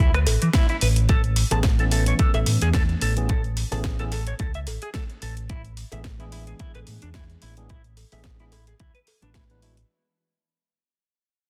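A dense, heavily limited modern mix with little reverb carries this sunny, groovy nu-disco excerpt at 109 BPM in 4/4, with a light swing on the sixteenths, cut from a longer piece and fading out across its whole length. Up front, a punchy, tape-warm electronic kick re-recorded in a large room anchors the groove alongside a layered house kit of hi-hat, rim click and a cracking snare, while a close, dry cowbell sits in the background. A fingered electric bass pushed through an envelope filter holds the low end with a direct, amped tone. A dark, clean, fingered electric guitar plays the riff, softened by a low-pass filter and given shimmer by lush chorus and slapback echo. From 1.5 seconds a bright tine electric piano adds accompaniment, pumping with sidechain compression and slapback echo of its own. The harmony moves from E7(no3)/A to Amaj9 and then to E7/A.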